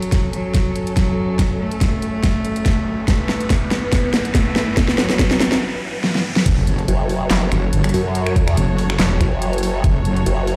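Heavy wobble dubstep at 142 BPM in a half-time feel with a light swing, pitched in F# phrygian and cut from a longer piece, with a heavy, chaotic mood. A clear, earthy cello carries the melody with light vibrato and tape echo until 5.6 seconds, over a lush, distant string section holding sustained chords through a gritty vintage sampler texture and sidechain pumping, moving from F#m to Em/G. An overdriven dubstep kit with a huge snare, hi-hat, handclaps, finger snaps and crash cymbal sits up front alongside a knocking electronic kick, running drum fills through the build-up while a riser and impact hover in the background. After a brief break, the drop lands at 6.5 seconds back on F#m, where a detuned sawtooth wobble bass comes in, joined moments later by a formant-sweep wobble bass built on a pulse wave, both overdriven, compressed and thickened with chorus. The whole mix carries light digital ambience and the character of a big sound system in a bare stone room.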